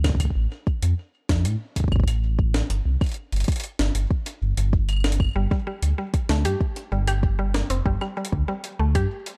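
A dry, dark production with little reverb frames this short, melancholic and glitchy IDM fragment at 96 BPM in a straight 4/4, tuned slightly flat to A4 = 437 Hz. Up front, a deep, rumbling detuned saw bass with a beating, sustained tone mixes sawtooth, square and sine colours, sitting alongside a deep electronic kick. Further back, a gritty, compressed jungle sampler-style kit adds pitched-up claves, hi-hat and a medium-tuned snare with a tape-flavoured, small-room character and a touch of delay. The harmony moves from F/A to a chordless stretch, then settles on G5 at 5.4 s, where a woody, round mallet-like FM pluck enters with bright arpeggios, its noise layer and short decay coloured by chorus, phaser and digital delay. The sampled kit carries on briefly after the other parts stop at 9.1 s, and the cut ends at 9.4 s.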